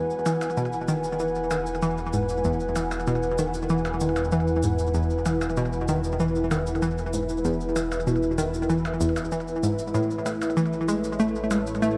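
Cosmic and expansive, this ambient, sequencer-driven space music moves at 96 BPM in E major, shifting to A at 9.9 seconds in a short cut from a longer piece. A bright, evolving pad with a slow attack holds sustained chords while a round, detuned analog pluck plays a riff through chorus and delay, both up front, over a fat, nasal, saturated analog bass on a low E. Cabasa and electronic percussion blips sit quietly behind with delay, and the whole mix is bathed in a wet echo-chamber reverb.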